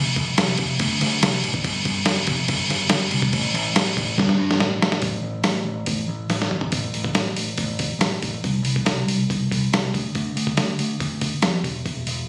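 A straight 4/4 pulse drives this moody, cool indie rock fragment, cut from a longer piece. A picked electric bass opens at the very start, dark, round and punchy with an amped edge, moving between E1 and G2. The drums arrive at 0.2 s, a dusty, sampler-style soul kit that sits up front, compressed and gritty, with a thumpy kick, a medium-tuned snare, hi-hat, crash cymbal and toms. Short drum fills at 4.2 s and 6.3 s mark the turns between the three sections that follow one another across the clip. The sound carries a light studio reverb and was recorded on a phone in the room.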